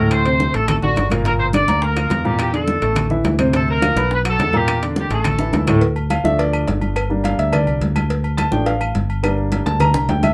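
Salsa at a fiery, danceable 210 BPM in D minor, this excerpt opens with a tight, punchy vintage horn section carrying the melody with light vibrato until 5.6 seconds, over a present, polished grand piano and a dark, round fingered electric bass sitting up front. Beneath them, bright congas and woody claves sit compressed and saturated in the background, while low-tuned bongos and cowbell and ringing, close and dry timbales and agogo bells fill out the percussion in a small room. After a drum fill, the short-sustained piano takes a solo from 5.8 seconds over a Dm to Gm progression, ending on another fill.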